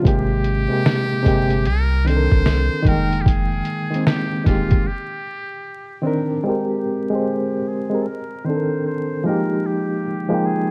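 A hazy, melancholic lo-fi hip hop excerpt with a swung feel, built on a barky, lightly overdriven reed electric piano with fast tremolo and a buzzy, breathy muted trumpet carrying the jazz-style melody through tape echo, while a deep, round sub bass and a compressed, muffled sampler drum kit with a thumpy kick and fat snare play until 4.8 seconds, then drop out for a break before a filter sweep from 6.5 seconds, all under worn, warbling cassette tape, vinyl crackle and light reverb.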